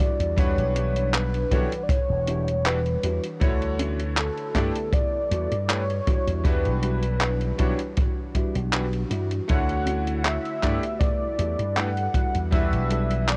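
A velvety, detuned synth lead carries the melody from the start over a dark, clean electric guitar riff, a boomy, up-front kick and the sampler-style handclaps and hi-hat of a detuned 8-bit drum machine, while a punchy slap bass with an envelope filter, a bright, clangy electric grand piano and, from 1.0 s, a sustained phaser-tinged pad in the background fill out this hazy, nostalgic vaporwave fragment, which moves through Em9, Dmaj9 and G69 on worn, warbling cassette tape with pitch drift and little reverb.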